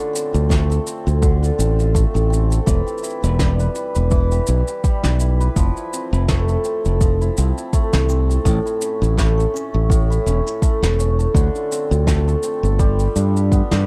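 Folktronica excerpt at 83 BPM with a lightly swung, pastoral feel, where a shimmering, ringing hammered dulcimer spins tape-echoed arpeggios over a Dm7, Em, Fmaj7 and A progression; a bright, up-front fingered electric bass anchors the low end, a soft, tape-warm electronic kick sits beneath, and a distant, roomy brushed snare with shaker rounds out the dry sound before the whole band hits a closing accent at 13.7 seconds.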